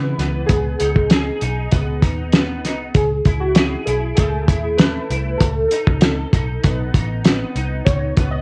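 Indie bedroom pop at 98 BPM in a straight 4/4, wistful and lonely, this cut from a longer piece moves through G#m, Amaj7, B7 and C#sus2 with its tuning set to A4 = 445 Hz. Warbling, nostalgic synth keys carry the melody through phaser and ensemble chorus, over a bright, twangy twelve-string electric guitar with chorus, vibrato and cassette tape coloring, and a dark, round, foam-muted picked electric bass. A cloth-damped drum kit enters at 0.2 s up front, with a fat snare, a tight kick, hi-hat, and a gritty, muffled cassette saturation, all in a home-recorded cassette sound with light reverb.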